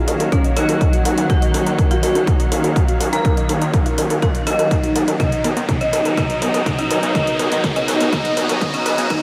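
A dreamy, reverb-soaked mix carries this driving, hypnotic melodic techno excerpt in Eb minor at 123 BPM, built as one long build-up under a filter sweep over Ebmadd9 moving to B/D# at 5.2 s. A heavy, up-front electronic kick and a tape-warm techno kit with hi-hat and toms play alongside a gritty, saturated synth bass, while a tight sequenced synth plays quiet arpeggios and the lush studio string section holds sustained chords. In the background, an expressive, smooth synth lead with vibrato and tape colour carries the melody beneath an eerie, inharmonic FM bell line, joined by bold brassy analog synth stabs, a swarming drone, an ethereal airy pad and an electronic riser from 1.5 s, with a drum fill from 5.2 s.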